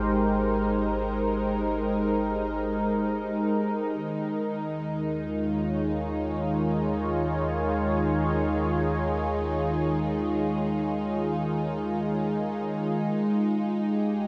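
In free time, this peaceful, serene ambient excerpt drifts from Abmaj7 to Eb7sus4 and back to Abmaj7 over 14.3 seconds, led by a smooth, detuned sawtooth pad that holds soft-attack sustained chords up front with chorus. Beneath it, a deep, ominous drone rumbles and warbles in the bass, while a string-like, tense bowed drone with vibrato and a noise layer sits in the middle, each carrying its own built-in reverb. The dreamy mix is soaked in a plate reverb with a 3.2-second decay, and the synth drone fades out across this fragment of a longer piece.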